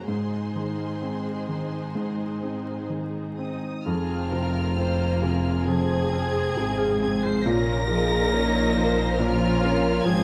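A close, detailed recording with light reverb and a vinyl crackle frames this longing, bittersweet cinematic film-score fragment in a rubato 62-70 BPM 4/4, where a bright, intense violin section carries the high melody over a lush second violin line with portamento, a mellow felt-muted upright piano, a smooth chamber viola section, ringing fingerpicked harp arpeggios and a background cello bass, as a distant double bass section joins at 3.9 s and a soft-attack French horn section adds sustained chords from 5.7 s, moving through Abadd9, Fm and Bbm.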